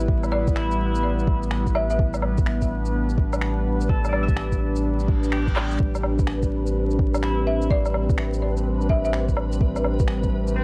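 A dry, gritty recording dusted with vinyl crackle carries this melancholic, nocturnal future garage fragment, swung on the sixteenths. A warbling, nostalgic pad sustains Em/A and later Am11 chords, and a round, deep sub bass pumps beneath it over a soft electronic kick. A clean, twangy electric guitar with chorus and delay enters at 0.6 seconds, while a woody, hard-mallet folk marimba plays brief, dark melody phrases through analog delay and electronic shaker, woodblock, finger snaps and handclaps fill out the drums. A reverse cymbal leads into a drum fill at 5.6 seconds, and a grainy, flickering granular texture settles into the background from 6.1 seconds.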